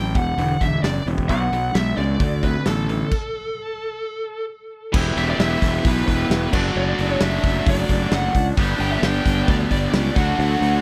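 A dry, close recording with a 1970s studio character frames this brooding, gritty classic rock cut in E dorian, moving at 132 BPM in a straight 4/4. Up front, a double-tracked, overdriven electric guitar picks a bright riff while a fuzzed, growly fingered bass punches alongside it, and a big-room acoustic kit with a medium-tuned snare, punchy kick, hi-hat and crash drives things from 0.2 seconds. Over them a bluesy lead guitar, warm and distorted with tape echo, picks a melody between A4 and G5. The opening passage runs through Esus2, B5 and D5 before the band halts at 3.1 seconds for a stop that lasts until 4.9 seconds. From there the second section moves through Em, D/F#, G and D until the clip cuts off mid-flow.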